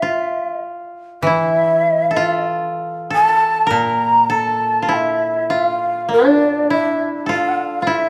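This is Japanese traditional chamber music, a brief solitary and meditative fragment cut from a longer piece, moving at a slow, rubato 50 BPM in 4/4 and tuned to A4 = 439 Hz. A breathy, mellow shakuhachi carries the melody from D5 to Bb5 across the full 8.1 seconds, its end-blown bamboo tone marked by vibrato, tongued attacks and chiff, sounding both up front and slightly distant, with an unsteady quality. Beneath it, one koto, played with fingerpicks, traces a second line from D4 to Bb4 throughout, its woody, dry pluck sitting close to the listener. A second koto enters at 1.2 seconds as a low accompaniment between Bb2 and E3, quieter than the other parts, and falls away at 7.1 seconds. The whole passage sits in a moderate recital hall reverb with a decay of 1.5 seconds, giving the sparse trio an unhurried, contemplative space.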